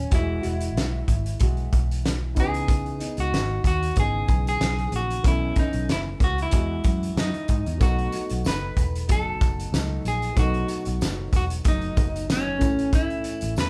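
A loosely swung 94 BPM groove in 4/4 from an up-front indie drum kit with a fat snare and punchy kick anchors this dreamy, nostalgic indie-pop and bedroom-pop piece, where a round, foam-muted vintage electric bass sits beneath a dark, fingerpicked nylon-string guitar with a warbly pitch drift and a woody, slightly detuned upright piano tucked in the background with audible action noise, while a clean, picked electric guitar carries the melody over Emaj9, C#m9 and B9sus4 harmony, until a jingly, very quiet tambourine joins at 7.8 s as the chords move to B7, the whole band heard playing live in one room with a moderate large studio reverb.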